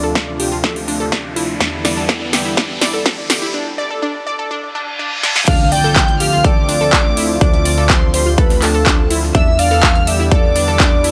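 This emotional, driving progressive house excerpt opens with a detuned sawtooth pad holding sustained Dm7 and Em7 chords in D dorian, while a round, warbling analog pluck spins arpeggios through chorus and tape echo over a punchy, funky bass with a fast filter pluck, all three pumping against the sidechain at 124 BPM. Within the first second a punchy, high-passed electronic kick and a big-room kit with a punchy snare, metallic hats, handclaps and crash cymbal come in up front, and a drum fill, a filter sweep and a background riser shape the build-up before a reverse cymbal leads into the drop at 5.5 seconds. There an impact lands, and a velvety, mellow unison synth lead takes the melody with vibrato, cassette-tape colour and echo. A reedy, close-miked violin section with a gut-string, period-style tone carries a second line high above it. Underneath, a gritty, compressed sampler-style breakbeat kit adds very quiet hi-hat and snare, and the whole mix sits in a light reverb.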